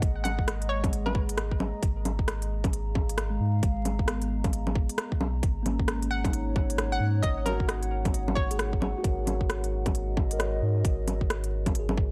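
A nocturnal, ghostly future garage piece at 133 BPM with a swung 16th-note feel opens with a mellow tine electric piano under a filter sweep and tape echo, a warbling, detuned tape-like pad with chorus and its own reverb, and a round sub bass, all three pumping against a tight, up-front electronic kick and an overdriven kit of bongos, crisp hi-hat and rim click. A hollow, bouncy square pluck with chorus and analog delay enters at 0.2 seconds and returns at 6.1 seconds, after the chords have moved from G#m7 to F#add9/G#, all in a dry, gritty mix dusted with vinyl crackle.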